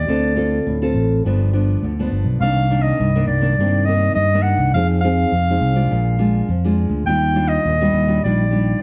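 Sunny and festive, this brief excerpt of samba and choro moves at a straight 103 BPM in C minor, with a smooth, clear clarinet carrying a classical-style solo melody over a harmony that passes through Dm7, G7, Cm9, Fm7, Bb7 and Ebmaj9. Up front, a fingerpicked nylon-string guitar supplies classical accompaniment with audible finger squeak, while a warm, amped fingered electric bass anchors the low end. A wet studio reverb places the trio further back in the room, and the highs are rolled off above 8 kHz.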